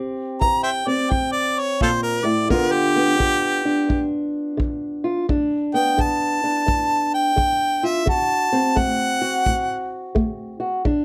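A dark, woody fingerpicked acoustic guitar with old strings and a boxy, ladder-braced tone opens this rollicking, swaggering slice of acoustic country blues. It swings at 86 BPM, with a bright, close-miked harmonica taking a jazz-style solo up front from 0.4 seconds, full of light vibrato, scooped notes and tongue slaps over a soft attack. A smooth, punchy kick drum played with brushes enters alongside it, while the chords move from C7 to G7 and then D7 at 8.1 seconds, all set in a light reverb.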